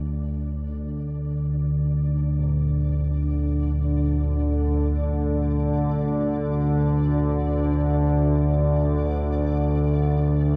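Floating in free time, this unsettling, cavernous dark ambient drone is a short section cut from a longer piece, tuned to A4 = 439 Hz. An up-front analog drone anchors it throughout, its sawtooth and pulse-wave tones evolving through pulse-width modulation with a resonant edge, slow attack, long release and a layer of chorus. Above it, a grainy, flickering granular triangle-wave texture fades in across the whole passage, sustained and bathed in its own reverb. From 2.4 to 9.2 seconds, carillon bells trace barely audible arpeggios, their bronze, ringing tone carrying a minor-third overtone and the airy strike of an iron clapper. The dreamy mix is soaked in a huge reverb with an 8.7-second decay, giving the sound a vast, hollow depth.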